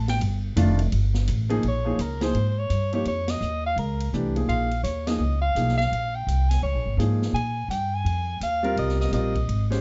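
A mellow soprano saxophone carries the melody in this searching, spiritual modal jazz fragment cut from a longer piece, entering at 1.7 seconds with vibrato, scooped notes and a plate-reverb sheen. Underneath, a concert grand piano comps with a natural tone and deep bass, opening on a rootless Cmadd9 before settling into Bbm7 in Bb dorian and shifting to Abadd9 at 7.3 seconds. An upright bass, plucked with a woody, thumpy character, sits up front alongside the piano. A big-band drum kit swings quietly at 168 BPM in 4/4 on hi-hat, ride cymbal, a medium-tuned snare and a punchy kick, with the whole band striking an accent at 3.2 seconds. The sound is soft-edged and warm, with light reverb and a gently rounded top end.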